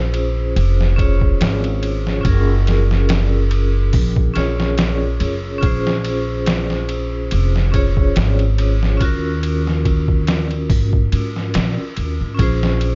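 Trip hop with a brooding, melancholic mood, cut from a longer piece and built on a slow, lightly swung groove over minor seventh and major seventh chords. A woody, pizzicato upright bass sits up front alongside a muffled, pitched-down sampler-style drum kit of thumpy kick, medium-tuned snare, hi-hat and ride, overdriven and gritty with vintage 12-bit crunch, which enters at 0.1 seconds. Hard-mallet vibraphone rings out bright and metallic, sitting slightly forward in the mix with tremolo and tape echo, all wrapped in a dark digital ambience that shaves off the top end.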